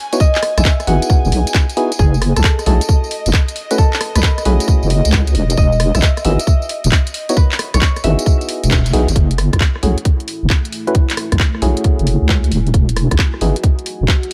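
Drums re-recorded in a small room give this soulful, bouncy two-step UK garage cut a snug, produced feel, with a tight electronic kick and a deep, wobbling bass sitting up front. The garage drum kit adds handclaps, rim clicks, tambourine and warm hi-hats over a swung shuffle. A ringing, fingerpicked concert harp carries the melody through echoing delay, while an airy, breathy pad hangs in the background with a vintage warble and sidechain pumping. Hollow, nasal organ-like stabs with chorus and delay punctuate the groove as the chords move between Emaj9 and F#m9. A band accent lands at 8.7 seconds, and at 9.8 seconds the harp drops away as a moody, dark ambient pad with reverb and a long release takes over the backdrop.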